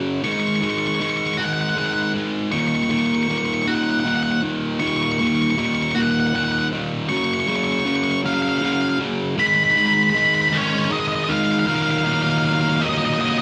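Captured as a band playing live in one room with moderate studio reverb, this cathartic, melancholic rock excerpt in Eb minor moves at a slow 52 BPM in 6/8, where a bright, double-tracked, compressed distorted electric guitar riff sits up front from the first second and a dark, picked octave-fuzz lead guitar carries the melody in a high register from 0.2 s, building up until a new section arrives at 11.7 s.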